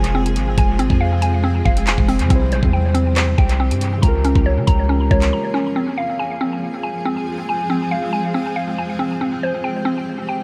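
A half-time drill groove drives this tense, cold hip hop fragment, cut from a longer piece, with an electronic kit of knocking kick, metallic hi-hats, handclaps and rim clicks sitting up front under a dub echo. A deep, sine-toned 808-style bass holds long decaying notes beneath it, and both drop out at 5.3 seconds. A woody, round mallet-like synth pluck carries arpeggios with a warbling, vintage FM character, its chorus, low-pass filter and dub echo keeping it prominent and mellow throughout. Muted, felt-like synth keys add dark, intimate accompaniment until 5.8 seconds. Alongside them, a granular cloud pad spreads blurred, detuned chords with a slow attack, a long release and a bright, evolving shimmer that lasts to the close at 10.4 seconds. The echo-heavy mix with light reverb leaves the sound cold and tense.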